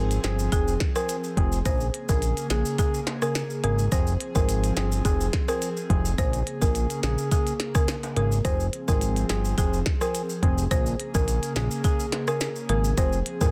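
A hollow, percussive organ stab, a breathy pad set in the background with sidechain pumping, and a thick sawtooth bass open this hypnotic, tough dancehall groove, cycling between Fm and Bbm7. Glitchy electronic drums sit up front with clicky hats, a soft kick and a tiny clipped snare, joined by maracas and timbales in a live room. A dry, woody marimba carries the melody through a digital delay, and the whole cut from a longer piece has little reverb and a dense, heavily limited master.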